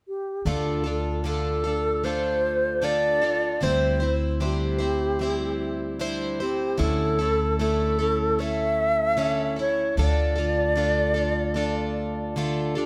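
A close-miked, bright wooden-headed alto flute carries the haunting, wistful melody from 0.1 seconds, its pure, tongued notes shaded with expressive vibrato over a slow, straight 76 BPM in D minor. At 0.5 seconds a picked, plugged-in twelve-string acoustic guitar enters up front with a shimmering, octave-doubled sparkle, moving through Dm, C/D and A/D before returning to Dm. Beneath it, a pizzicato upright bass sits on a low D with a woody, growly thump, all wrapped in light reverb in this short cut from a longer folk piece.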